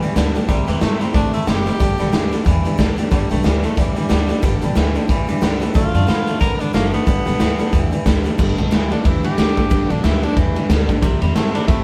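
A retro, rollicking rockabilly groove in G major at 182 BPM with a swung feel kicks off with a gritty, saturated garage drum kit up front, thumpy pizzicato upright bass on gut strings, a clean, scooped, twangy electric guitar riff, a bright dreadnought acoustic guitar picking in the background and an intimate upright piano with audible action noise and short sustain. A clear tenor saxophone with light vibrato takes the melody from 0.5 seconds over chords moving through C, G and D7, while the woody piano adds fills before dropping out at 8.4 seconds. The saxophone then carries a solo to the end of this excerpt, all captured as a band playing live in one room with moderate reverb.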